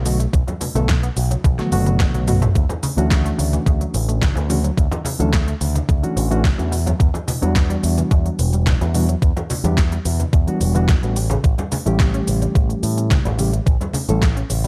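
Sunny and feel-good, this nu-disco excerpt moves at 108 BPM in a straight 4/4 in D major, drifting through Bm7, Dmaj9, Em9 and A7. An overdriven, thumpy electronic kick sits up front beside a bright, picked electric bass with an envelope filter. A layered pop drum kit adds a fat snare, crisp hi-hat, cabasa and toms, with a drum fill from 1.4 to 2.6 seconds, while ringing, hard-handed congas from a small room sit in the background. A reedy, mellow electric piano carries the chords through its built-in speakers with fast tremolo, sidechain pumping and slapback echo. In the background, a round, detuned analog pluck of sawtooth and square waves with a noise layer plays arpeggios with a fast attack and short decay, dressed in chorus, analog delay and its own sidechain pumping. Studio reverb colours the kit and kick, and a digital ambience surrounds the mix.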